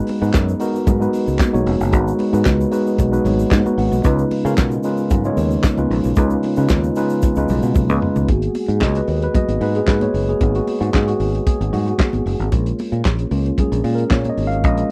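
Driving and sultry, this 113 BPM disco groove in G# dorian rides on a muffled, fat-snared soul drum kit with handclaps and a growly fingered electric bass up front, while a mellow tine electric piano accompanies, adds a fill at 3.0 seconds and takes a clean solo from 8.3 seconds after a drum fill, over a very quiet flute-like tonewheel organ with slow rotary speaker, soft high-tuned congas and a grainy tube shaker in the background, in a dry, close 1970s-style studio recording.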